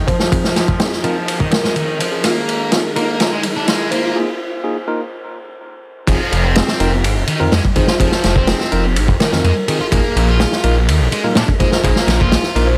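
Energetic, funky breakbeat in F minor at 125 BPM, this cut opens on a build-up where a gritty, saturated vintage drum kit, a fuzz guitar riff under a filter sweep and dub echo, bright tine electric piano stabs, a woody kalimba melody with old-record sound, a background tonewheel organ with fast rotary speaker and key click, and a very quiet riser gather through a drum fill into a break, before the drop at 6.1 seconds brings in a swirling, detuned, phased saw bass up front as the chords move between Fm7 and Bb7sus4.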